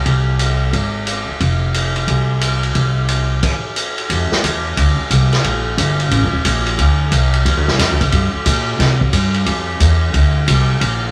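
A moderate club reverb surrounds this relaxed, warm jazz piano trio fragment at 178 BPM in a swinging 4/4, where a woody, plucked upright bass with steel strings sits up front alongside a natural drum kit of punchy kick, medium-tuned snare, hi-hat, ride and crash, both parts halting for a stop from 3.4 to 4.1 seconds before carrying the second section toward the close, the drums finishing at 10.9 seconds and the bass ringing on to 11.1 seconds.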